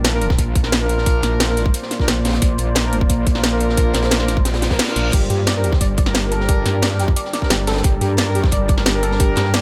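A driving 177 BPM drum and bass groove in 4/4 opens this short cut of dark technical drum and bass in G minor, with a tight, tape-warm electronic kick up front, a layered kit of cracking snare, metallic hats and crash, and a gritty, saturated breakbeat kit with a high-tuned snare sitting in the background. A metallic, wobbling FM bass drives the low end with aggressive, compressed weight and sidechain pumping, while a deep, moody pad holds sustained chords behind it and a smooth brass ensemble fires stabs through dub echo over a shift from Bb to G minor. A reverse cymbal rises at 4.6 seconds into a soft, round pluck arpeggio entering at 5.1 seconds with chorus and echo, keeping the mood mechanical and aggressive in a small-room space.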